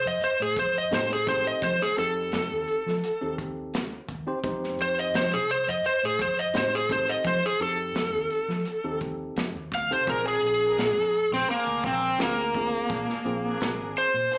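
An overdriven, bright slide guitar solos up front with slapback echo across this laid-back, gritty straight-eighth soul blues excerpt in F mixolydian at 85 BPM, over a round, foam-muted vintage bass, a crunchy, saturated breakbeat kit with a tight kick, a worn, slightly out-of-tune tine electric piano with its own slapback, and a dark chamber string section that enters at 10.1 s with bowed, vibrato chords in the background as F7 moves to Bb7, all heard through a live club PA with a small-speaker sound.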